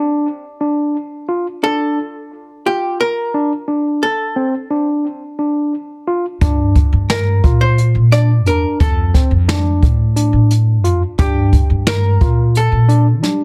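A dark, clean archtop guitar melody and barky tine electric piano arpeggios with tape echo open this driving, tense progressive instrumental in 7/8, until a woody, growly upright bass and a brushed drum kit with a boomy kick enter up front at 6.4 seconds, all under light reverb and a dense, heavily limited modern master.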